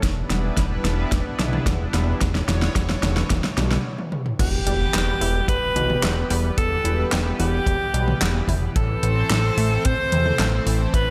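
A light reverb and small-room ambience frame this nostalgic, driving synthwave excerpt, which moves at 110 BPM in a straight 4/4, starting in E dorian over Em7 before settling into E minor. A shimmering, retro pulse-width pad holds sustained chords with chorus and sidechain pumping, while a very quiet, lush unison pluck with a warbling, vintage edge spins arpeggios alongside it. A fat analog bass sits up front, thick and mellow with a moving notch filter sweep, and it pumps with the sidechain too. A boomy acoustic kick and an overdriven, layered electronic pop kit, with its fat snare, gated reverb, handclaps, hi-hats, toms and crash, open with a drum fill that runs until a brief stop at 3.8 seconds. At 4.4 seconds the music shifts to Em and later Am, as a soft electronic impact hits and an edgy, forceful alto saxophone enters up front with vibrato and delay to carry the solo melody.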